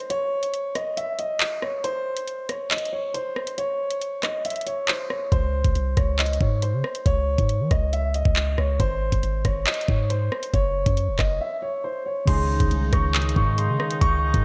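A dark, boxy concert grand piano opens this cold drill excerpt, carrying the melody with long sustain and a trailing delay. An electronic drill kit joins almost at once, with a knocking kick, bright hi-hats, handclaps, rim clicks and crash cymbal, all driven through overdrive. The music runs at 138 BPM with a half-time feel in C# harmonic minor, and piano and drums both sit up front. At 5.3 seconds a deep, sine-toned 808-style bass arrives with fast attacks and long decaying notes, moving under chords that pass from C#sus2 to G# and F#5. At 12.3 seconds a new section begins on C#sus2: warbling, detuned lo-fi synth keys with chorus fill in the accompaniment, while a classical-style woodwind section with light vibrato and a smooth top holds sustained chords. A moderate plate reverb soaks the whole mix in a dreamy haze that deepens the dark mood.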